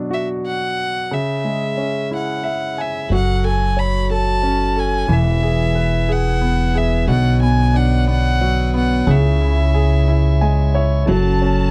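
A dry, close 1970s-style studio sound frames this melancholic, aching six-eight pop ballad excerpt, where a clear, up-front concert grand piano with deep bass accompanies and adds fills beneath a smooth solo violin melody with light vibrato; a woody, thumpy pizzicato upright bass and a piping, lightly overdriven tonewheel organ with key click and a stopped rotary speaker, sitting in the background, enter at 3.1 seconds, and a lush, distant studio violin section adds an expressive second line with portamento at 11.1 seconds.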